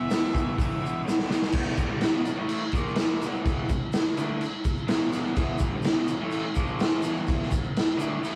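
Swaggering and rowdy, this garage rock fragment is cut from a longer piece and moves in a straight 4/4, caught in a rough rehearsal-room recording with light reverb. An overdriven, double-tracked electric guitar sits up front with a picked riff spanning the low and middle register, moving between E5 and A#5 chords. A dark, fuzzed lead guitar with slapback echo plays a brief picked melody only in the opening moment, stopping at 1.0 s. The acoustic drum kit is punchy and gritty, its saturated sound set in a bright stone room with a rolled-off top, and a fill at 1.1 s leads into the main stretch at 1.5 s. A grainy, mellow tube shaker sits close but in the background throughout.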